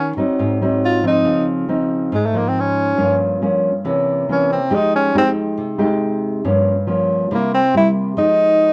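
A mellow tenor saxophone solo opens this short bossa nova excerpt in F minor, its subtone, vibrato and scooped notes sitting up front over a nylon-string guitar played with the thumb, both heard together from the start to 8.7 seconds. At 139 BPM in a straight 4/4, the mood is intimate and wistful as the harmony moves from Ab7 and Dbmaj9 through Gm7b5 and C7b9 before settling on Fm9. A worn, warbling old-tape quality with drifting pitch and a moderate studio room colours the recording, while the guitar's fresh strings keep its classical tone warm.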